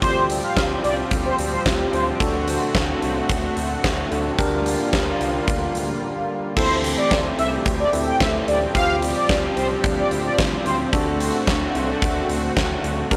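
A mellow, detuned synth brass with chorus, phaser and tape echo stands out in this nocturnal, driving D minor synth-pop excerpt at 110 BPM, heard from the start until 2.0 seconds and again from 6.6 to 10.8 seconds over a tine electric piano played through its built-in speakers, a lush, nasal unison pad, a smooth sawtooth bass with tube saturation, and a huge, up-front arena drum kit with a fat snare and punchy kick, all carrying a cassette-tape character in a small room with light reverb.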